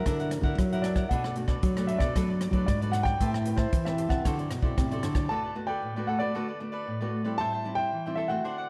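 A joyful, playful samba and choro fragment opens with a concert grand piano carrying the melody over a crisp, bright picked cavaquinho, a small fingerpicked nylon-string guitar and a dark, thumb-plucked nylon-string guitar on the bass line, with an airy, polished big-band drum kit joining at 0.1 s on hi-hat, punchy kick and rim click. At 5.3 s the bass guitar and drums drop out, leaving piano, cavaquinho and the fingerpicked guitar to carry the second section over D6 and Am7. The production is dark and warm with light reverb, and the excerpt is cut from a longer piece.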